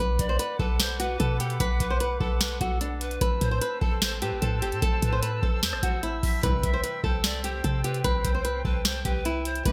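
Brooding and dark, this half-time trap hip hop excerpt at 149 BPM sits in B phrygian, moving from Bm to Am to C over a booming analog drum machine with a deep kick, crisp snare and metallic hats under gated reverb, plus a clean, sine-toned 808-style bass in the background. A fingerpicked flamenco guitar carries the melody up front, while a pure flute section holds sustained chords with vibrato and a breathy, distant bamboo pan flute traces a second line through delay. A lush, woody string section in the background adds stabs at 6.4 seconds and again at 9.7 seconds, all set in a bright 1980s-style digital production with small room ambience.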